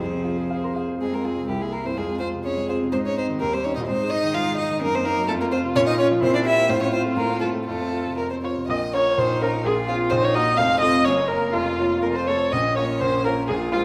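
Heard through a wet recital-hall reverb, this short cut from a quick classical-period movement for piano quartet has a restless, stormy mood, set in 2/4 with a free, rubato feel. The violin carries the melody up front throughout, its warm, expressive tone shaped by vibrato, soft attacks and sliding portamento. Beneath it, the cello plays a second line with a rich, even sound and its own vibrato, while the viola adds close, intimate accompaniment with light vibrato and a gentle top end. The grand piano fills out the accompaniment from deep bass to high treble, sitting up front with a vintage, smooth character. The harmony shifts to a new tonal footing around 4.8 s, and a contrasting second section begins at 8.7 s.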